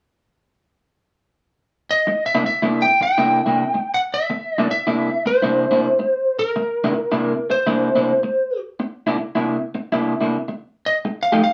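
Blues in C mixolydian at 107 BPM with a swung 4/4 feel, laid-back and soulful, cut from a longer piece and set in a wet studio ambience that suggests a band playing live in one room. A bright, twangy, lightly driven lead guitar carries the melody from 1.9 seconds, while an electric guitar through a small old amp lays down a warm, slightly broken-up riff from 2.1 seconds, both picked, compressed and up front. The harmony sits on C9 before moving to F9 at 10.9 seconds.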